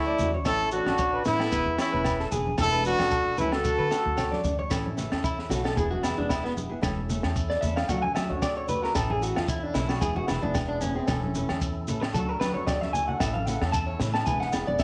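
A lightly swung, danceable highlife groove from a joyful guitar band opens with a brilliant, tight horn section carrying the melody until 4.4 seconds, over slightly broken-up electric guitar arpeggios with slapback echo, a woody pizzicato upright bass, a dark fingerpicked nylon-string guitar, grainy shekere, low-tuned congas, ringing agogo bells and a compact cocktail drum kit with a punchy kick and high-tuned snare; a clean electric guitar solo then takes over at 4.7 seconds as a fat, lightly overdriven tonewheel organ with slow rotary speaker and key click adds sustained chords in the background, and a drum fill arrives at 12.5 seconds, the whole band sitting in a moderate echo-chamber reverb in this excerpt cut from a longer piece.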